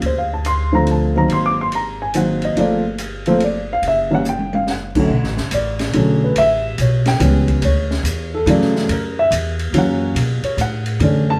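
Swung eighths in 3/4 at 142 BPM drive this cool, smoky jazz piano trio fragment, where a dark, mellow upright piano sits up front with the melody, its intimate tone carrying audible action noise and a smooth, vintage character, over plucked upright bass with a woody steel-string sound. An acoustic drum kit of ride, hi-hat, crash, snare, toms and kick sits lower in the mix, with dark cymbals, a high-tuned snare and a boomy kick, and it plays a fill at 4.3 seconds before the harmony settles into B minor at 5.1 seconds. The trio plays live in one room, bathed in a wet studio reverb.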